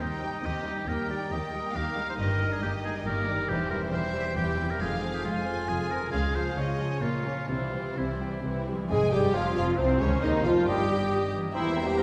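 A rich chamber violin section carries the melody through this stormy, restless excerpt from a fast romantic orchestral movement in 3/4 at 137 BPM, played with a rubato feel and settling into F minor. Beneath the vibrato violins, a smooth-topped oboe and a lush second violin section weave second lines, while violas fill in close, expressive accompaniment and a concert harp rings out arpeggios in the background. Cellos and double basses anchor the bass from the background, bowed and even. At 8.9 seconds the music moves into a new section: a dark clarinet and a pure, crisp-attacked flute add further lines, a roomy bassoon joins the accompaniment, and very quiet mellow horns and bright trombones hold sustained chords, with a brief stroke of round, soft-mallet timpani. The whole orchestra sits further back in a wet scoring-stage reverb, giving the dramatic harmonies a spacious, sweeping sound.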